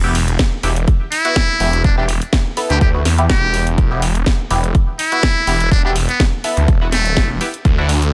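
A swirling, thick detuned sawtooth bass sits up front in this aggressive, bouncy bass house cut from a longer piece, its saturated, phaser-coloured low end pumping against the kick. That electronic kick is punchy, tape-warm and layered, re-recorded in a large room alongside a house drum kit whose cracking snare and hi-hat ride a lightly swung sixteenth-note feel. Band-passed chord stabs add a nasal, ring-modulated sawtooth edge with fast attacks and short decays, treated with phaser, analog chorus, sidechain pumping and digital delay. From 1.1 s to 7.3 s a solo trumpet with a metal mute carries the melody, buzzy and thin with a smooth top, light vibrato and scooped notes in a pop style, its line echoed by digital delay. A digital ambience surrounds the mix, and the whole passage stays on a single E minor chord.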